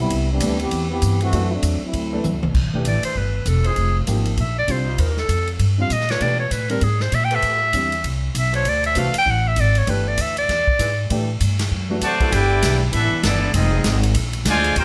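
A light reverb gives this big band swing passage a polished, airy hall sound, with the woody, growly upright bass and a breathy clarinet sitting up front. At 197 BPM in 4/4 with a swung eighth-note feel in G major, the mood is swinging and brassy, and the music is cut from a longer piece. A dark, distant trombone section takes the lead at the start over thumpy pizzicato bass, a drum kit with a punchy kick and medium-tuned snare, and a natural-sounding baby grand piano with short sustain. A brief drum fill then leads into a clarinet solo from 2.9 seconds, clear-toned with light vibrato and subtone, while a smooth-topped saxophone section holds sustained chords with a soft attack in the background and the piano accompanies through colorful harmony such as Fm7, Abmaj9 and Bm7b5. At 12.0 seconds the trombones return alongside a tight, vintage-toned trumpet section that carries the melody up front over chords of G69, Fm7 and Bb9.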